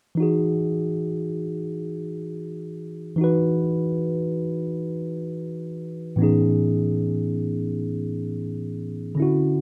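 A lone tine electric piano opens the fragment at 0.2 seconds, sitting up front in a soulful, smooth R&B setting. It plays in free time in E major, ranging from A2 to B4, with a worn, slightly out-of-tune character that still comes across clean and direct. The harmony rests on Emaj9 before moving to Amaj9#11 at 6.2 seconds, giving the passage a lush, unhurried glow. A light reverb surrounds the instrument, and the rough home-demo mix lends the recording an intimate, unpolished feel. The piano carries on alone until the fragment breaks off at 9.6 seconds, clearly lifted from a longer piece.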